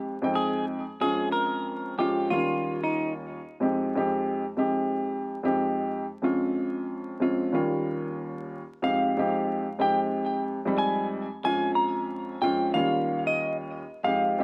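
A semi-hollow electric guitar carries the melody up front, its clean, fingered hollow-body tone shaded dark and trailed by digital delay, appearing briefly from 0.4 to 3.1 seconds and returning at 8.8 seconds through to the end. Beneath it, a dark upright piano supplies mellow, woody accompaniment for the whole 14.4 seconds, its sound colored by cassette tape and filtered at both ends of the spectrum. This is a reflective yet tough hip hop passage in F minor at 92 BPM, with a swung sixteenth-note feel in 4/4. The harmony circles through minor seventh chords and an Eb7, with a Dbmaj7 over F adding a softer turn midway before the progression starts over. A small room adds a moderate, short reverb, and vinyl crackle sits over the recording, giving this fragment of a longer piece a worn, intimate character.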